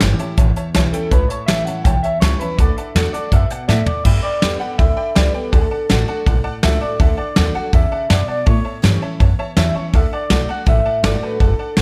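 A twangy, slightly broken-up electric guitar through a small old amp carries the melody in this rowdy, upbeat rockabilly clip, colored by phaser and tape echo. Beneath it, a picked dreadnought acoustic guitar picks out a full-bodied accompaniment, while a tack piano adds jangly, metallic high notes with short sustain and a vintage, percussive bite. An upright bass played pizzicato on gut strings sits prominently in the mix, woody, dark and thumpy. The brushed drum kit is up front, with a fat snare, punchy kick, hi-hat, toms and crash cymbal, and it plays a fill from 3.7 to 4.1 seconds that leads into a new section built on G, D and A7 chords. Light reverb gives the studio room a natural sense of space, and the piece is cut from a longer performance, running about 11.8 seconds.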